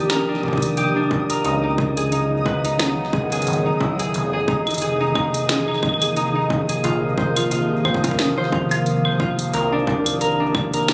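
Intricate and eerie, this IDM excerpt moves at 89 BPM in F minor with a light swing, as an up-front concert harp rings out fingerpicked arpeggios through digital delay over a hollow, airy pad with chorus holding chords that drift from Cm9 through Dbm9, Fm7 and Bbsus2. A rubbery, resonant acid bass with a filter sweep sits deep underneath, while a grainy, flickering texture glimmers in the background through its own reverb. An industrial kit with a clanging snare, crisp hats and claves, set up front with digital delay, enters at 0.1 seconds, and a distorted, tape-warm electronic kick joins at 0.4 seconds, all heard in a phone recording that carries a club reverb.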